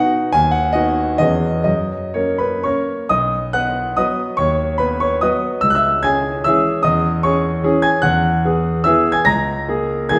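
Heard from further back in a recital hall with a wet reverb, a solo concert grand piano rings out clear and smooth, with a deep bass and a vintage character. This short passage cut from a longer romantic classical piece is a triple-time dance in 3/4 and B major, moving with rubato between 116 and 158 BPM, its dotted rhythms giving it a proud, rustic air. After a brief opening phrase, a new section begins at 3.1 seconds and reaches an E chord at 8.0 seconds before arriving on A#m7/C#.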